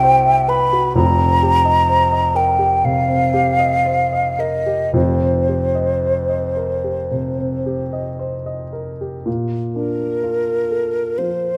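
Rubato phrasing stretches a slow 4/4 pulse that drifts between 54 and 65 BPM in this luminous, dreamy impressionist duo for flute and grand piano, cut from a longer piece. The concert flute carries the melody from the opening through 11.6 seconds. Its tone is airy and hollow, with vibrato and tongued articulation, and it sits up front, a little louder than the accompaniment. The dark grand piano, also close and up front, supports it across the whole span from deep bass notes into the middle register, its sound mellow. The harmony opens on Cmaj7#11, moves to F11 at 1.0 seconds, and settles on Bbmaj7 when a new section begins at 9.3 seconds. Close, detailed microphones capture both instruments inside a moderate concert hall reverb with a 2.0-second decay, giving the duo a luminous sense of space.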